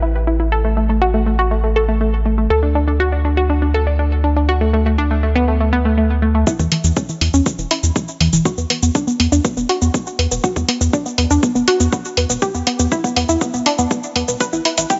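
Progressive house at 121 BPM with a driving, dreamy mood, where a nasal sawtooth analog pluck spins arpeggios through chorus, phaser and delay over a deep, round analog bass, both pumping with sidechain across A5, D5 and E5 power chords, until a punchy electronic kick and bright shaker and hi-hats enter at 6.5 seconds to start a build-up with a filter sweep on the arpeggio, capped by a drum fill at 14.4 seconds.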